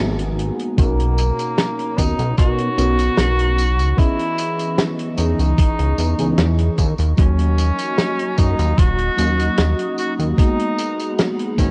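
Vaporwave at 75 BPM in B major with a dreamy, nostalgic mood, cut from a longer piece: a round, dark FM electric piano with lush chorus and analog delay, a detuned, lo-fi tape-like pad with phaser in the background, and a glossy, up-front chorused synth bass carry chords like G#m9 and Bmaj9. During a brief opening band accent, a dry soul drum kit with a fat snare, hi-hat and tambourine enters at 0.2 seconds, and at 0.8 seconds a thumpy, sampler-gritty electronic kick joins a breathy, intimate tenor saxophone solo with subtone, vibrato, scooped notes and tape echo, all washed in light studio reverb and cassette tape character.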